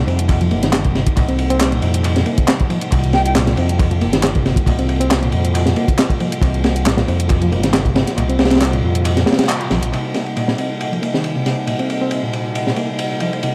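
Heard through a small, lightly reverberant room with an echo-heavy mix, this gritty, swaggering breakbeat cut from a longer piece moves at 137 BPM in 4/4 with a slight swing on the sixteenths, centered on C minor pentatonic over a Cm7 chord. Up front, a crunchy acoustic breakbeat kit brings a punchy kick, a high-tuned snare and dark, rolled-off ride cymbals, layered with an overdriven electronic garage kit of handclaps and filtered hi-hats that runs until 9.9 s. A round, amped, overdriven fingered electric bass holds the low end over the same stretch, while a reedy, worn and slightly out-of-tune electric piano riffs in the background through tube saturation, a low-pass filter and analog delay. Behind it, a piping, scooped tonewheel organ sustains chords with key click, chorus vibrato and a slow rotary speaker, pumping against the beat. A pure, softly attacked concert flute flickers in briefly at 3.1 s with vibrato, colored by an AM-radio tone and echo. 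The kick drops out just before the band accent at 9.5 s, and at 9.9 s the music moves into a new section carried by the organ, electric piano and breakbeat kit.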